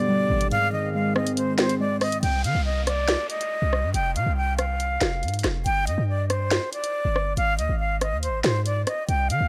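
Dark and ominous, this drill excerpt in a half-time feel opens with a breathy, close-miked concert flute melody carrying a delay, over warbling, detuned lo-fi synth keys with chorus and a mellow French horn section holding sustained chords in the background. The keys and horns drop out at 2.2 seconds as the music moves into a new section, leaving the flute up front with a punchy, heavy 808-style bass and an electronic drill kit of sharp snare, rim click and hi-hats. A background downlifter sweeps through under light reverb.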